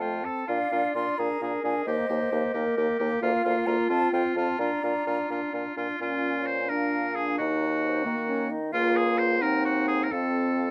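Classical-period wind quintet writing in a quick, spirited and cheerful 6/8 at 87 BPM, taken with rubato and cut from a longer piece, moving from Bb major into Bb minor at 6.0 s. An airy silver flute with expressive vibrato and a soft attack carries the melody over a punchy, clear oboe second line, while a mellow clarinet and a French horn with vibrato fill the accompaniment above a bassoon bass of vintage character, all five playing throughout. The close, detailed and dry recording makes each instrument distinct.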